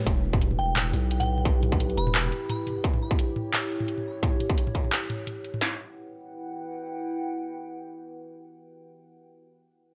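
A half-time drum and bass groove at 173 BPM in 4/4, with a light swing on the sixteenths, drives this tense, spacious fragment in E dorian, resting on an E minor chord. Two electronic kits sit up front until about 5.6 seconds. One is an industrial kit with a distorted kick and a clanging snare, re-recorded in a small room. The other is a layered drum and bass kit of handclaps, toms and bright hats pushed through overdrive, and both carry studio reverb. A deep, sine-toned 808-style bass with a fast attack sustains low and decays near the front, while a glassy FM bell with chorus, phaser and delay sounds a brief crystalline melody high above. Underneath, a dark, moody analog pad built from detuned square, sawtooth and triangle waves with a sub octave holds slow-attack chords through chorus, phaser and sidechain pumping, carrying on alone after the drums stop until 9.1 seconds, all within a light overall reverb.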